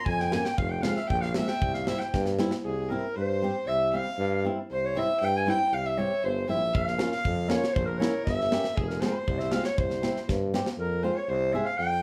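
Festive yet bittersweet, this klezmer piece in C phrygian dominant moves in a straight 2/4 at 118 BPM and speeds up throughout its 12 seconds, cut from a longer performance. A roomy, classical-style clarinet carries the melody up front, with a solo spot at the opening, while a single bowed violin, biting and nasal with an airy, earthy bow, traces a close second line in the same register. Beneath them, a soft-attacked tuba anchors the bass, and a fingerpicked acoustic flamenco guitar supplies accompaniment. A tight metal drum kit with a medium-tuned snare and a rolled-off top plays from 0.1 to 2.6 seconds and returns at 6.7 seconds, closing each passage with a drum fill. The harmony cycles through Bbm, Fm and C before settling on Fm, and a wet studio reverb places the ensemble further back in the room.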